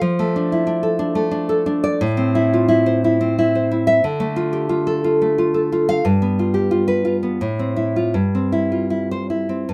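A moderate studio reverb gives this short excerpt a sense of space around its single instrument, a nylon-string guitar placed up front with a full-bodied, deep classical tone. It is a romantic piece for solo classical guitar in C major and 3/4, taken at around 88 BPM with uneven beats and a flexible, rubato feel. The fingerpicked guitar plays alone for the full 9.7 seconds, ranging from G2 up to F5. The harmony moves from Dm/F through Am and Dm to G7, settling on Am at 7.4 seconds before closing on C/G at 8.2 seconds. The mood is sunny and warm, cut from a longer piece.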